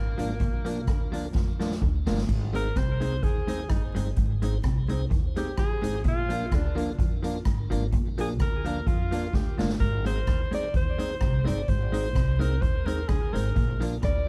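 Dark production with light reverb and a bed of vinyl crackle frames this upbeat, cheerful ska cut, taken from a longer piece and moving at 128 BPM with a slight swing. An up-front, airy street-band drum kit with a boomy kick drives woody pizzicato upright bass, a clean, compressed hollow-body jazz guitar, piping tonewheel organ stabs through a slow rotary speaker and tape echo, and a twangy, slightly broken-up electric guitar riff in the background with ensemble chorus and tape echo. A clear, distant tenor saxophone carries the melody for the opening 1.8 seconds; then, after a drum fill, a breathy, punchy alto saxophone with a smooth top and tape echo solos from 2.6 seconds to the end.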